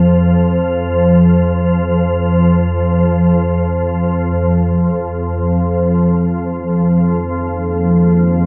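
In free time and tuned to A4 = 436 Hz, this short, unsettling dark ambient fragment rests on an up-front organ-like drone with a warbling, detuned, vintage character, sustained from 0.0 s in a vast, echoing cathedral reverb. At 4.3 s the harmony settles onto a Db69/F chord. At 7.5 s a very quiet, deep and moody pad with a sub octave slips in alongside the drone, adding brooding sustained chords just before the fragment is cut off.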